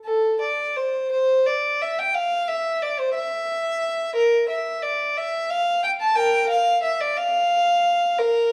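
Set in 6/8 at 59 BPM counted in dotted quarters, the pulse here bends freely with rubato, giving this baroque-style suite movement a solemn, flowing character. A single bowed violin carries the whole passage alone, entering at 0.1 s and playing through to 8.5 s within the span from A4 to A5. Its tone is rich, smooth and even, with vibrato, and it sits up front in the mix while keeping a distant quality. A stone room's reverb, lingering about 1.2 seconds, surrounds the instrument, and the overall production leans dark. Cut from a longer piece, this brief fragment captures one continuous stretch of unaccompanied classical playing.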